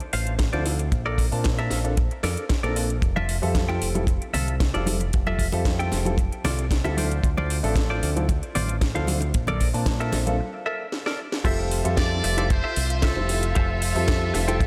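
Light reverb and small-room ambience frame this sunny, groovy nu-disco excerpt in F major at 114 BPM, where a tight, dry kick and an overdriven house kit with cracking snare and metallic hats drive an up-front, envelope-filtered fingered bass, a twangy clean electric guitar riff with subtle chorus and tape echo, and a dark, mellow grand piano pumping under sidechain, while background congas play from 3.2 s to 10.4 s, and after a break and drum fill the drop at 11.4 s soon brings lush, woody strings and a buzzy muted trumpet section melody in diffuse ambient delay.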